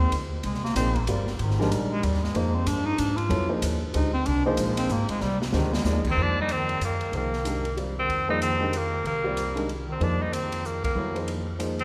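A bright bass clarinet solo opens this modal jazz excerpt in F dorian, its scooped notes and vibrato sitting present over a warm grand piano, a woody, dark pizzicato upright bass and an open jazz drum kit with dark cymbals, a medium-tuned snare and a boomy kick. The mood is hypnotic and searching, moving briskly at 188 BPM in a swung 3/4 over a single Fm11 chord. A drum fill at 5.2 seconds leads into the second section, where a bright, punchy tenor saxophone enters at 6.1 seconds with a forceful, vintage-tinged vibrato, placed up front as the melody. The band hits an accent together at 10.8 seconds before the cut. A wet church reverb with a long tail surrounds the ensemble, giving the recording the spacious air of a church or concert hall.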